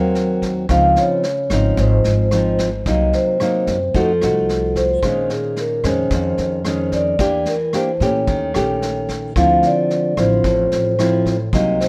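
A mellow vibraphone played with soft mallets carries the melody in this breezy, relaxed bossa nova excerpt, its metallic, ringing tone sitting mid-forward with the motor off. Beneath it, a thumb-plucked nylon-string guitar sits up front with a classical touch, voicing rich jazz harmony that moves from a rootless Ab9 through Dbmaj9, Cm7b5 and F7b9 before settling toward Bbm11, Eb7#11 and Dm9. An upright bass played pizzicato adds a woody, growly low end with a bright edge from its steel strings. A vintage brush drum kit sits lower in the mix, its medium-tuned snare, punchy kick and rim clicks captured naturally in a studio room with a rolled-off top. Light reverb gives the straight, unhurried groove a gentle sense of space across its 11.9 seconds.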